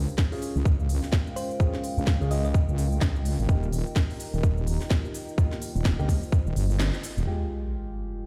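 An overdriven, tight electronic kick drives this bouncy, swaggering bass house cut at 127 BPM with a 16th-note swing, alongside a heavy, saturated wobble bass, crisp hats and a cracking snare from a low-pass-filtered house kit, and pumping stabs from a boxy, dark grand piano with delay. A deep, moody analog pad with phaser and a lo-fi, nostalgic tape-like pad with its own reverb sit in the background over Db and Eb chords, while a round, tine-like thumb-piano-style pluck appears briefly from 1.4 to 2.5 s. After a short break with a band accent at 6.8 s, a sub drop lands at 7.3 s on an Fmadd9 chord, all in a dry mix with a hint of stone room ambience.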